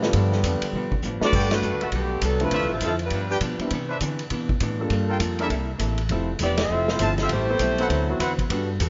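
A clear, tight trombone section opens this joyful, swinging big band excerpt with a solo over the rhythm section for its first 1.3 seconds, before a drum fill at 1.0 seconds launches the full band at a brisk 201 BPM in G major. The saxophone section then takes the melody up front with a warm, vibrato-laden sound, playing from 1.2 to 3.4 seconds and again from 6.4 to 8.2 seconds, while a close-miked trumpet section adds stabs with light vibrato in the background, and the band hits accents at 1.5 and 6.5 seconds. Underneath, a woody pizzicato upright bass anchors the harmony, an intimate baby grand piano with audible action noise comps alongside a dark, clean, picked hollow-body electric guitar, and a vintage drum kit with dark cymbals, a punchy kick and a medium-tuned snare pumps in a small room. The chords move through lush extended harmonies such as Gmaj9, Dm9 and Cmaj9 before settling on Am7 and D13, and light reverb gives the whole a rolled-off, vintage sheen.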